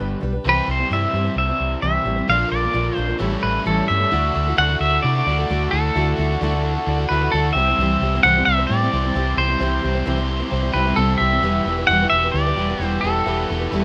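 A straight 4/4 groove at 131 BPM drives this hopeful, jangly slice of folk rock and heartland rock, cut from a longer piece and captured with small room ambience in a rough home demo mix. Out front, a twangy, compressed pedal steel guitar carries the melody, played with fingerpicks and slide and marked by volume swells. Beneath it, a dark, full-bodied jumbo acoustic guitar picks the accompaniment with audible finger squeak, while a double-tracked overdriven electric guitar adds a bright, gritty riff. A round, hollow-body short-scale bass, fingered and amped, sits up front in the low end, and a concert grand piano stays in the background with an intimate, vintage tone and audible action noise. The harmony moves from C through Bb and A7, opens onto Dadd9 at 4.1 seconds as a new section begins, then passes through C and settles on Em.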